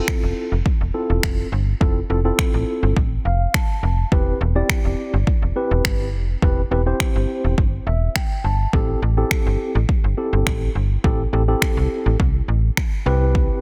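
A dry, dense and heavily limited mix carries this upbeat, summery dance-pop excerpt in C major at 104 BPM. An up-front deep house drum kit sets a deep kick under finger snaps, with soft clipping on the snare. A snappy, metallic-edged FM bass pumps with sidechain. A mellow, clean tine electric piano, sounding through its built-in speakers, pumps the same way over Fmaj7, Cmaj7/E and Am7 chords, adding short fills at 3.0 and 7.6 seconds.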